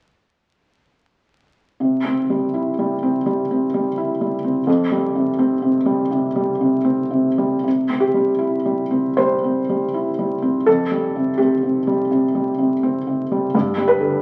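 Through the crackle of a very old 78 rpm record, a felt-muted upright piano enters alone at 1.8 s and plays soft, mellow, up-front phrases with short sustain and audible action noise, moving freely in rubato at around 82 BPM over C and Fsus2 chords before reaching G at 13.5 s, in a peaceful, intimate neoclassical minimalist piece in C major, heard in a moderate studio reverb.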